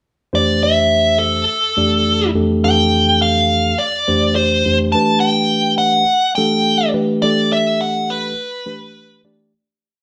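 At 0.3 seconds, an overdriven lead guitar and a tine electric piano enter together in a soaring, bright jazz groove in F major at 104 BPM, swung lightly on the sixteenths in 4/4. The guitar sits up front with a dark, smooth, picked tone, spinning a free-flowing melody that never settles on a recurring motif. Beside it, the mellow electric piano plays clean, direct, pushed chords in quartal voicings, moving from Fmaj9 to Gadd9 at 4.9 seconds. The two play live in one stone room that wraps the sound in wet reverb. A fade-out begins at 7.2 seconds and carries this short, complete piece to its close.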